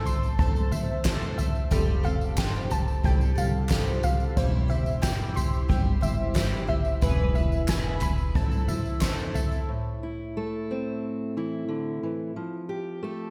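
A picked twelve-string acoustic guitar opens this wistful, stirring indie folk passage at 0.0 seconds, its boxy, shimmering, octave-doubled tone carrying analog chorus and slapback echo, with finger squeaks audible. Alongside it, a warbly, dusty synth pluck plays arpeggios higher up, a lo-fi, detuned vintage sound with a sub octave, a filter sweep, chorus and analog delay. Underneath, a woody, growly pizzicato upright bass sits in the background, while a soft-mallet drum kit stands up front with a fat snare, boomy kick and toms, joined by a jingly tambourine and, from 1.0 seconds, very quiet, crisp group handclaps. The arrangement builds at a straight 90 BPM in 4/4 in A minor, moving through Am, Fadd9, C/E and E and back to Am under a big arena-style reverb. At 9.7 seconds the texture gives way to a dark, fingerpicked steel-string acoustic guitar, up front in an auditorium-like space, carrying Am on into Fadd9 before this fragment of a longer piece ends.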